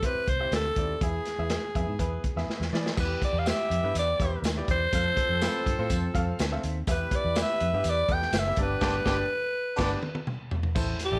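Uptempo 1960s-style soul with a driving, passionate mood, heard as a short section cut from a longer piece. A raspy, bright alto saxophone carries the melody up front and close-miked, its gritty, punchy tone leading over a clear baby grand piano with short sustain. Underneath, a crunchy breakbeat drum kit sits saturated and up front with dark cymbals and a tight kick, while a vintage foam-muted fingered electric bass adds a round, punchy low end from 0.2 seconds. At 3.0 seconds, after a drum fill, the harmony moves from C and E into E minor, and a clear horn section enters as a second line with light vibrato and a soft attack, joined by a jingly tambourine in the background. A band accent arrives near the close alongside a final drum fill, all set in light reverb.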